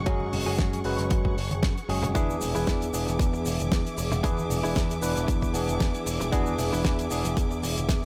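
Sleek and groovy, this nu-disco excerpt moves at 115 BPM with a light 16th-note swing, built on an up-front punchy electronic kick, a damped 70s kit with a fat snare, hi-hat and shaker, and very quiet ringing congas and maracas. A bright picked electric bass with an envelope filter anchors the F#sus2 to E7 changes, while a barky, lightly overdriven tine electric piano carries the accompaniment with 12-bit sampler grit, tape echo and a filter sweep running through the whole passage. A clean, direct-recorded electric guitar riff sits in the background with subtle chorus, and a lush symphonic string section holds sustained chords with vibrato, portamento and sidechain pumping, all within an echo-heavy mix of light reverb.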